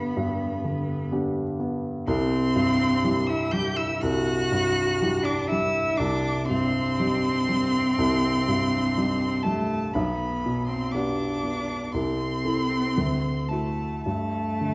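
A lyrical, warm classical slow movement for piano trio opens with all three players together: a dark, mellow baby grand accompanies up front with an intimate sound and audible action noise, a distant cello sings a focused second line with vibrato, and a rich bowed violin carries the melody high above with vibrato. At a rubato 61 BPM in 4/4 and tuned to A4 = 436 Hz, the harmony moves from G through C and a darkening C minor, then G/B, Am/C and D9 before settling on G5 at 14.0 seconds. A recital-hall reverb with a 1.5-second decay wraps the short cut in a dusky, wet glow.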